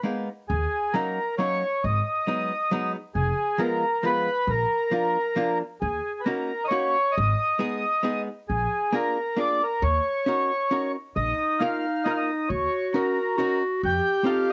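A swung 3/4 waltz at 135 BPM, this whirling, nostalgic musette piece in E-flat minor opens with a dark, hollow-body archtop guitar picking clean, compressed chords. A reedy, airy accordion carries the melody up front, while a woody, thumpy pizzicato upright bass anchors the low end. At 11.2 seconds a clear, classical-style clarinet adds a second line, and the guitar, accordion and clarinet carry a cassette-tape tint within the light reverb of this home recording, cut from a longer piece.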